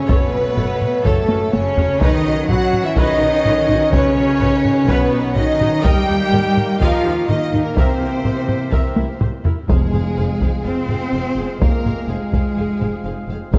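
Dark and epic, this cinematic orchestral film-score excerpt moves at 125 BPM in a straight 4/4, with lush, vibrato-rich violins carrying the melody over a second violin line, rich viola accompaniment, and a bass of expressive cellos with portamento and deep double basses. Mellow French horns, distant, very quiet trombones and a roomy woodwind section hold sustained chords, while close, dry taiko drums struck with hard sticks drive underneath, with fills at 1.3 and 9.0 seconds. At 9.7 seconds the music settles into F minor as round, soft-mallet timpani strike briefly, all set in a dark production with a wet scoring-stage reverb.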